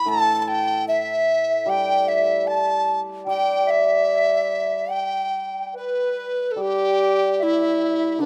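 Closely miked and finely detailed with a light reverb, this short cut from a longer Chinese chamber piece sounds graceful and festive, moving in a free rubato around 74 BPM in a G gong mode tuned to A4 = 437 Hz. An up-front large dizi carries the tongued, straight-toned melody with a buzzing membrane and airy bamboo breath. Beneath it, a ringing, shimmering hammered dulcimer supplies low accompaniment, while a softer bansuri adds a vibrato-laden second line from 0.1 seconds, its highs rolled off and its tone slightly unsteady, before the music moves into a new section at 6.6 seconds.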